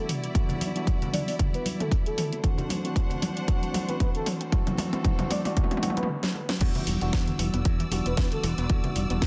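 A soft, round synth lead opens this groovy, sensual nu-disco clip, its melody thickened by a sub octave and coloured with chorus, tremolo and tape echo, over a worn, slightly out-of-tune tine electric piano played through a combo amp and a lush, bowed studio string section holding sustained chords. The piano is filtered and pumps against the kick, as do the strings, while a very quiet, warbling, detuned unison pluck spins arpeggios underneath. A house kit with a cracking snare, hi-hat, toms and crash, a punchy, tape-warm electronic kick up front and bright, thin-skinned congas in the background drive a swung groove over Em7 and D7 chords. The opening is a build-up, with a filter sweep on the electric piano and drum fills running up to and through a short break at 6.1 seconds. At 6.6 seconds the drop lands, and a bright, growly fingered electric bass enters as the harmony returns to Em7. 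The mix is dense and heavily limited, with light reverb, and the clip is cut from a longer piece.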